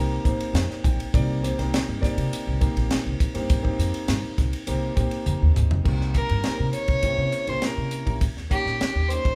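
Nocturnal and driving, this short cut from a longer electric jazz fusion piece moves at 102 BPM in a straight 4/4 in C minor, with a warm concert grand piano comping over woody pizzicato upright bass and an up-front funk kit whose high-tuned snare, tight kick and bright cymbals sound dry and polished. The piano, intimate and vintage with audible action noise, adds fills near the start and again around 5.0 seconds as the drums fill into the second section. At 6.1 seconds a bowed violin enters up front, earthy and smooth with light vibrato, carrying the melody over chords moving from Cm7 to C7b9 and Eb7, all within a single room and light reverb.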